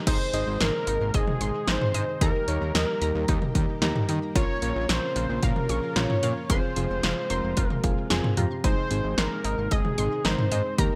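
Light reverb gives this short synth-pop excerpt an open, nostalgic glow, with a punchy analog drum machine sitting up front, its kick, snare, hi-hat, toms and crash cymbal carrying gated reverb and a small-room character. In Ab major at 112 BPM in a straight 4/4, the upbeat groove rests on a fat, detuned sawtooth bass with a saturated, evolving edge and a plucky filtered attack. Above it, a full-bodied analog lead sings the melody with vibrato and a mellow sub-octave depth, while soft, round electric-piano-like synth keys with chorus add gentle accompaniment and play a short fill from 7.6 to 8.6 seconds. Deeper in the background, a lush, wave-folded unison pluck ripples through arpeggios with digital delay, and a very quiet vintage string machine with cellos holds slow-blooming chords under ensemble chorus. The harmony moves through Ab, Eb, Bbm and Fm before returning to Ab.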